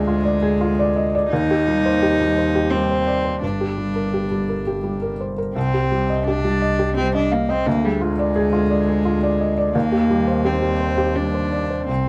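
A three-beat metre bends freely under a rubato feel in this short neoclassical piece for piano and strings, cut from a longer work and lasting 12.1 seconds. A felt-muted upright piano carries the accompaniment up front, its mellow, intimate tone colored by audible action noise that brings the listener close to the instrument. Alongside it, a single bowed cello plays the second line sul tasto, dark and pure with a soft attack and a smooth, floating top. Lower down, one double bass bowed sul tasto adds a rich, airy foundation with light vibrato. The harmony circles through Ddim, Cm/Eb, Gm and Cm, and the dry, closely miked sound lends the longing, fragile mood a detailed, confiding presence.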